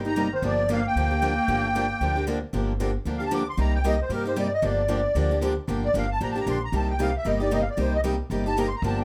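Up front in a moderate studio reverb, a reedy, shimmering musette accordion carries the melody of this virtuosic, swinging jazz manouche passage, cut from a longer piece, taking a solo from 2.5 seconds after a bright, forceful clarinet with vibrato sounds a distant second line until 2.2 seconds. Two picked acoustic guitars, one bright with fresh strings and one boxy with finger squeak, hold the accompaniment, while a woody, thumpy pizzicato upright bass on gut strings sits close and dark beneath them. The harmony moves between Gm7 and Cm7.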